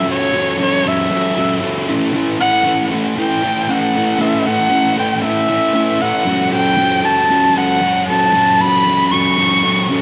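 Cathartic and bittersweet, this rock excerpt sets a single bowed erhu, soft in attack and full of vibrato and sliding portamento, close and up front over a dark, double-tracked fuzz guitar riff. Both parts run for the full 10 seconds, the erhu carrying a slapback echo while the picked guitar stays thick and distorted. A wet concert hall reverb gives the recording a big arena sound.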